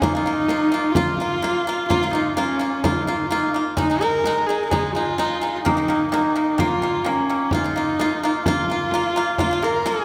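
A resonant hall reverb with a long tail surrounds this solemn, windswept Mongolian folk passage at 128 BPM in 4/4, where a husky, up-front horsehead fiddle carries the melody with vibrato and portamento over bright, percussive fingerpicked pipa arpeggios and a close, dry frame drum, all three playing throughout the 10 seconds, cut from a longer piece.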